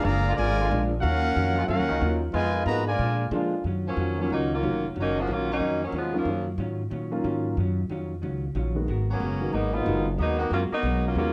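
Dramatic, sultry swing jazz at 183 BPM in Eb minor: a clear, softly attacked trumpet section carries the melody over a punchy trombone second line for the first 3.3 seconds, joined from 0.3 seconds by dark, sustained trombone chords. Then a mellow, vibrato-laden saxophone section takes up the tune from 3.9 seconds, while a woody, growly pizzicato upright bass sits up front and a clean, compressed hollow-body electric guitar and a concert grand piano with deep bass accompany in the background, all in a moderate large-studio reverb with a dark production.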